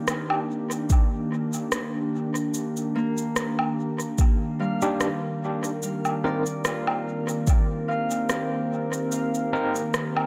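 Echo-heavy with light digital ambience, this hazy, deep ambient dub fragment opens on a warbling, detuned tape-like pad holding sustained chords under chorus and reverb, while electronic rim click, cabasa and woodblock sit up front through dub echo and a deep, tape-warm electronic kick drum anchors the loose swing from 0.9 s. A ringing, fingerpicked Celtic harp adds arpeggios through tape echo from 3.0 s, and at 4.8 s a barky, overdriven tine electric piano cuts in with gritty stabs colored by medium tremolo and dub echo.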